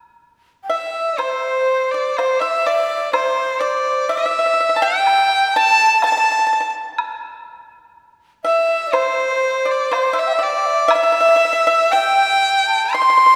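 Rubato at about 61 BPM in 4/4, this graceful, festive Chinese traditional chamber piece in a C gong mode is cut from a longer work and opens with a breathy, chiffy bamboo xiao at 0.6 seconds. A clear, biting erhu joins at 0.7 seconds and carries the melody up front with light vibrato and earthy portamento, while the bright, dry, fingerpicked pipa adds a percussive second line. A close woodblock sits in the background from 1.2 seconds, and a wet concert hall reverb surrounds the ensemble.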